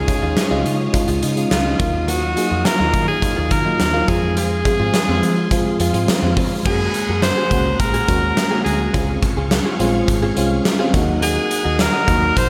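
Urgent and nostalgic, this short 1980s-style pop excerpt moves at 105 BPM in a straight 4/4, built on a big rock drum kit with a punchy kick and fat snare, plus crash cymbal and hi-hat, sitting up front beside a round, foam-muted fingered bass. A bright alto saxophone carries the melody with scooped notes and slapback echo, over a glassy, bell-like FM electric piano with chorus, a very quiet, clean, direct-recorded guitar riff, and shimmering, warbling string-machine violins in the background. Chords such as Dbadd9, Ebmadd9 and Fm give way to Gbadd9 at 6.7 seconds and then Dbmaj7, all bathed in a lush hall reverb that lends a big arena sound.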